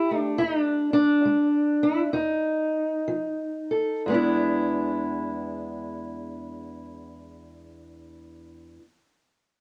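Rollicking yet laid-back, this short acoustic country blues excerpt features a lone fingerpicked steel-string parlour guitar, dark and boxy in tone and placed up front, swinging in 4/4 at roughly 59-73 BPM in E mixolydian. It moves through E7 and F7 before returning to E7 at 4.1 seconds, easing its pace over the opening 4.1 seconds. Light reverb and the warble of worn old cassette tape, with its drifting pitch, give the sound an aged, homespun character.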